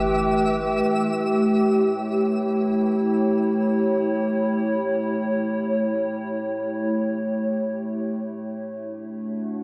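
Spacious and melancholic, this ambient passage from a longer piece opens with a fleeting cluster in its first second: barely audible, ringing handpan arpeggios, a round sine sub bass, a very quiet drone of moving, wave-folded overtones, and a twinkling granular shimmer. Beneath it all, an up-front, warbling, lo-fi pad with chorus sustains detuned, slow-attack chords from the start, shifting from Gadd9 to A7 at 0.9 s, where it carries on alone, and on to a rootless Bm7 at 8.1 s. A huge, wet reverb and a cassette-tape character envelop the recording.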